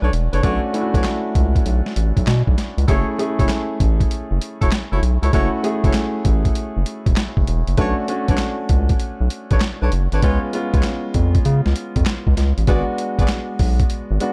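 R&B in a new jack swing vein, this short cut from a longer piece moves at a swung sixteenth-note pulse with a punchy, confident mood. A sampler-style boom bap drum kit sits up front, pitched down and compressed, with a thumpy kick, a high-tuned snare, handclaps and hi-hat giving it a gritty edge. Beside it, a round analog bass blends square and sine tones into a deep, nasal, mellow sound with a fast attack and sustained notes. A concert grand piano supplies intimate accompaniment with long sustain and audible action noise, while a tight horn section adds jazz-style stabs with vibrato and a smooth top, treated with delay. The harmony moves from Bm9 through F#m7 and C#7 before a shift at 12.7 seconds lands on G#m7b5, all set in a small room for a dark, warm production.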